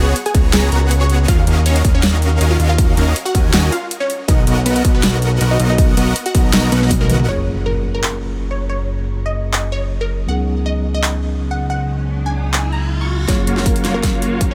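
A dry, close-sounding future bass excerpt at 160 BPM in a half-time 4/4 feel and F# major, lush and playful, opens on a drop where huge, bright detuned supersaw chords with subtle chorus, sidechain pumping and a low-pass filter ride over a fat, sawtooth analog bass, a punchy electronic kick and a big-room dance kit with a huge snare, metallic hats, handclaps and toms, while a detuned unison pluck melody with cassette-tape grit, digital delay and a moving notch sparkles on top; the kick drops out at 7.0 seconds, and at 7.3 seconds the supersaws follow as a mellow, clean tine electric piano with delay enters alongside a background impact and riser, and at 13.3 seconds the kick and supersaws return for a drum-filled build-up.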